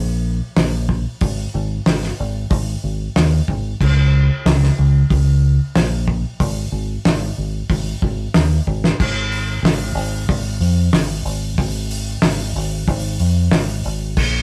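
A deep, fingered electric bass opens this brooding classic rock fragment, dark and round in tone, with a direct, amped sound sitting up front and ranging from Ab1 to F2. At 0.6 seconds a damped 70s acoustic drum kit joins, dry and close, with a fat snare, a tight kick, hi-hat and crash cymbal. The groove moves at a driving 93 BPM in a straight 4/4 feel. A short drum fill from 8.7 to 9.0 seconds carries the music into a new section, where bass and drums push on together until the clip is cut. A moderate studio reverb lends some space, while the rough rehearsal-room character keeps the sound raw and immediate.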